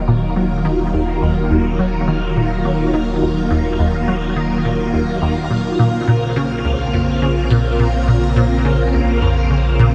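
A phased string machine opens this ambient space-music excerpt, holding vintage, swirling sustained chords up front with slow attacks and long releases, its ensemble chorus and phaser giving the sound a bright shimmer. Beneath it, a warm sub bass lays down deep, round sine tones that anchor the low end from the very start. A fraction of a second later, a resonant blip pluck enters with a sequenced riff, its juicy, squelchy square and sawtooth tones snapping in with fast attacks and short decays while the filter keeps the sound evolving. The pluck is treated with phaser, ensemble chorus and tape echo. A huge, wet reverb with a long tail wraps the whole production in a dark, spacious atmosphere, and the harmony moves from one minor chord to another at 5.8 seconds. The mood is expansive and mysterious, a steady, straight-feeling drift through a cut from a longer piece.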